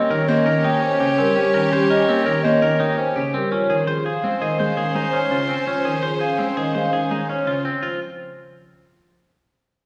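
A straight 6/4 pulse at 167 BPM drives this urgent yet meditative fragment of minimalist classical pattern music in F minor, moving from Eb7 to Dbmaj7 before landing on an F5 chord at 7.8 seconds. The vibraphone carries the melody with soft mallets, its ringing, mellow tone colored by a slow motor vibrato and a vintage, band-limited sheen. Around it, a twangy, compressed electric guitar picks bright arpeggios, a clear grand piano with deep bass sits up front in the accompaniment, and a smooth soprano saxophone adds a soft-attack second line over lush bowed string chords, all heard from further back in a wet recital hall.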